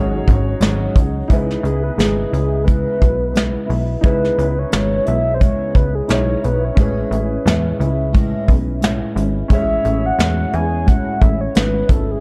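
A hazy, wistful stretch of indie bedroom pop in C# minor opens on a G#7sus4 chord. A soft octave-layered synth lead, thumb-plucked flamenco guitar, woody upright piano and plucky analog bass all sound from the first moment, and a brush drum kit joins at 0.3 seconds. The tempo sits at 88 BPM in 4/4 with a gentle swing on the sixteenths. From 1.3 seconds the round, sub-octave synth lead takes a solo over C#m7, carried by subtle chorus and analog delay, before the harmony moves to Amaj7 at 6.8 seconds. Beneath it, the guitar's fresh strings and finger squeaks are coloured by ensemble chorus and vibrato, and the slightly detuned piano adds a smooth, vintage tone. Up front, the funky bass, with its filter pluck and ring modulation, sits alongside the drums' punchy kick and medium-tuned snare, all wrapped in light reverb and a dark, warm production.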